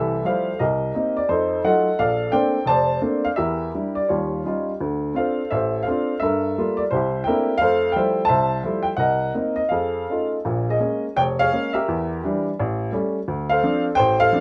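A lone upright piano opens on an Fmaj9 chord, setting a relaxed, swinging solo jazz mood in F major at 172 BPM in 4/4, with swung eighths and a rubato feel that lets the time breathe. The piano has a woody, warm character with long sustain, sitting up front in a room with light reverb. Its range spans from F1 down low to A5 up high. The harmony moves through rich colors such as Cm7, F7b9, Bbmaj9, Eb9, Gm9 and C13 before landing back on Fmaj9 at 7.6 seconds and then turning toward F7alt. From 10.5 seconds a new section brings Bbm7, Em7b5 and A7, settling on Dm7 as this 14.4-second passage, cut from a longer piece, comes to a close.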